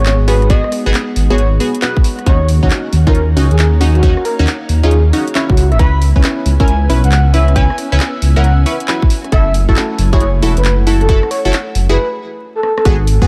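A dark, rumbling detuned saw bass sits up front with sidechain pumping, driving this bouncy, moody two-step UK garage excerpt alongside a tight electronic kick and a swung garage kit of handclaps, rim clicks and warm hats. Punchy, bright chord stabs with a filter sweep, a moving notch and tape echo join a breathy, flute-like synth lead with vibrato, while a very quiet silky string machine sustains chords and a warbling, nostalgic lo-fi pad with phaser glows in the background. Vinyl crackle and light reverb colour the whole, and a short break from 12.0 seconds brings a drum fill at 12.6 seconds.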